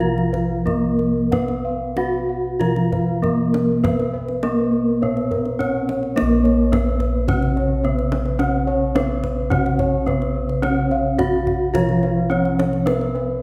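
Hypnotic and shimmering, this straight 4/4 Javanese gamelan passage at 91-107 BPM, cut from a longer piece, sets an up-front bronze metallophone melody struck with a horn mallet and ringing with paired-tuning beats over a soft, padded metallophone accompaniment, mellow bossed gongs and an airy background metallophone sharing the arpeggios, bright, full bossed gongs anchoring the bass, and a deep, dry kendang played with hard hands, all heard from further back in a reverberant recital hall with a change of section at 6.2 seconds.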